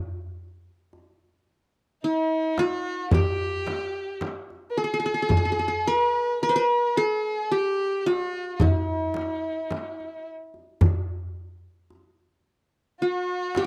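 Stately and warm, this Arabic maqam ensemble piece in G maqam huzam moves at 109 BPM in eighths, in a straight 10/8. The fingerpicked qanun carries the melody from the first moment, its triple strings giving a bright-edged, up-front sound, and the darbuka joins at 0.9 seconds with the deep, large-room tone of a clay shell and natural skin. At 2.0 seconds a single bowed violin adds a smooth, even second line with vibrato, and at 2.6 seconds a close, dry frame drum played with hard hands fills out the percussion. The whole passage stays in one section, cut from a longer piece. A light reverb colours a dry, close studio sound with a 1970s character.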